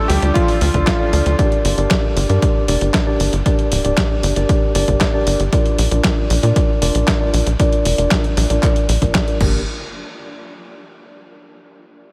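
Nostalgic and melodramatic, this italo disco excerpt opens with a bright, clangy electric grand piano melody with chorused unisons and analog delay that lasts only until 1.4 s, over mellow tine electric piano stabs shaped by a low-pass filter sweep and delay. A tight sawtooth sequencer bass with a fast, decaying pluck drives the straight groove alongside a punchy, tape-warm electronic kick and a clean 12-bit drum machine supplying handclaps, hi-hat, snare and crash. The dreamy mix is soaked in a huge ambient reverb as the harmony moves from Dm through Gm and Bb, and the parts fall away by 9.6 s.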